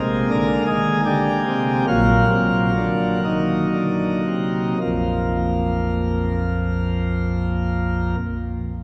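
A full, brilliant pipe organ plenum with baroque voicing, bright mixtures and a touch of chiff sits up front and plays alone in this serene, reverent classical chorale-style fragment in 3/4, cut from a longer piece, its rubato phrasing slowing through the first 4.8 seconds before a new section, all bathed in a lingering cathedral reverb.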